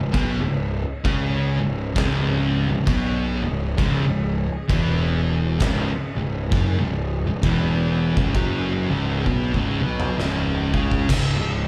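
A heavy, brooding stoner and doom metal excerpt in C# minor at a slow, swung 66 BPM opens with two thick fuzz guitars grinding out a riff, one up front with slapback echo and one in the background, over an overdriven, up-front fuzz bass, a very quiet silky string machine holding sustained chords, and an oversized low-tuned drum kit with a fat snare, punchy kick and dark cymbals that closes on a fill from 9.3 to 11.1 seconds, all heard as a live gig through a club PA in a small reverberant room.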